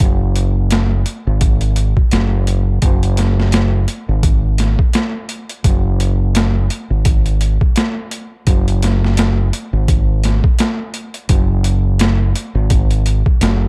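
Trip hop at 85 BPM in 4/4, this brooding, cinematic passage is cut from a longer piece and rides a 57% swing on the sixteenths, tuned to A4 = 439 Hz. A boom bap sampler-style drum kit runs from 0.0 to 13.6 seconds with hi-hat, a thumpy kick and a high-tuned snare, its compressed, pitched-down sound made gritty by overdrive and re-recorded in a large room. A growling fingered electric bass plays alongside it from the start to 13.7 seconds, staying low between F#1 and G#1 with a punchy, amped tone roughened by its own overdrive. Both parts sit up front in a dry mix carrying little reverb. The whole stretch holds to a single section.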